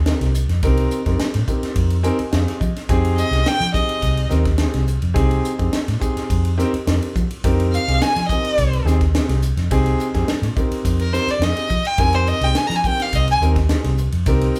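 Intense and slick, this electric jazz fusion excerpt in F minor moves at 106 BPM in a straight 4/4 over an Fm9 chord, with a round, foam-muted vintage electric bass and a tight funk drum kit of high-tuned snare, kick, hi-hat and ride supporting a dark, mellow grand piano with audible action noise that adds a fill at 1.8 seconds, while a rich, focused bowed violin sits up front with vibrato, first entering briefly at 3.2 seconds and returning at 7.7 seconds, all captured as a band playing live in one room with light reverb.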